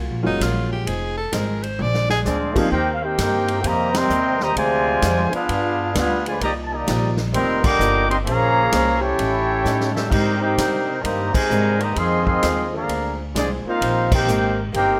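A swinging, joyful big band jazz passage opens with a very quiet, boxy archtop guitar and a woody pizzicato upright bass, joined almost at once by a vintage upright piano and a bright, forceful tenor saxophone solo with vibrato, over a natural-sounding drum kit with a punchy kick, ride, hi-hat and crash. From about 2.2 seconds a dark, soft-attacked trombone section takes up a second line and a mellow trumpet section carries the melody up front, while the saxophone and, by 2.7 seconds, the piano fall away, with a drum fill near 9.6 seconds and band accents punctuating the rest. Light reverb and small room ambience give it the rough feel of a home demo, under lush extended jazz chords throughout.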